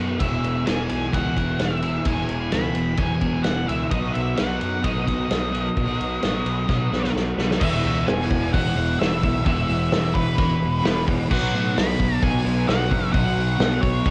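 This home-recorded cassette clip of shoegaze and dream pop sits in a hazy studio reverb, moving at 130 BPM in a straight 4/4 in E major with a dreamy mood. A thick, dark fuzz guitar with ensemble chorus dominates up front, while a biting overdriven guitar bathed in reverse reverb plays its riff in the background and a growling, punchy fingered bass adds overdrive underneath. An octave-fuzz lead guitar carries the melody high above through distortion and analog delay, as a loose indie drum kit with dark cymbals, a medium-tuned snare and a punchy kick sounds distant and roomy. A very quiet, shimmering twelve-string acoustic guitar picks bright, octave-doubled arpeggios only through the opening section, dropping out at 7.6 seconds as a drum fill that starts at 6.7 seconds comes to an end. The harmony rocks between Eadd9 and B, then E and B, and the piece is cut from a longer work.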